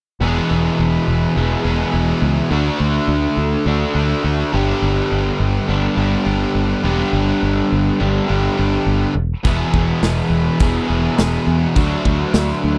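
A dry, close 1970s-style studio sound frames this swaggering, driving classic rock excerpt, where a crunchy, up-front overdriven guitar and a second bright, picked overdriven guitar play a riff over E, D and G chords, anchored by a round, foam-muted fingered bass, and a big acoustic rock drum kit with a punchy kick, medium-tuned snare and hi-hat joins them at 9.4 seconds.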